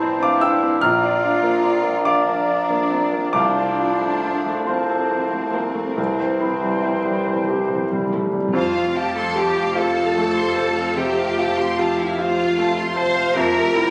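This romantic classical movement for piano and orchestra is a lyrical, lush passage in F major, unfolding in a slow, rubato 12/8 at 45-52 dotted-quarter beats per minute. A clear grand piano carries the melody up front, intimate and polished, with long sustain and audible action noise. Around it, a vibrato-laden violin section also carries the melody in the background while a second violin line and very quiet violas fill the middle. Rich, close cellos and distant double basses anchor the bass beneath warm, distant, roomy French horn chords. A pure metal-toned flute, a smooth oboe and a mellow, barely audible bassoon add lines until about 8.2 seconds, and a close, dry timpani fill from 6.0 seconds leads into a new section at 8.6 seconds. The sound is colored by a phone recording made in the room, with club-like reverb and compression over the scoring-stage ambience.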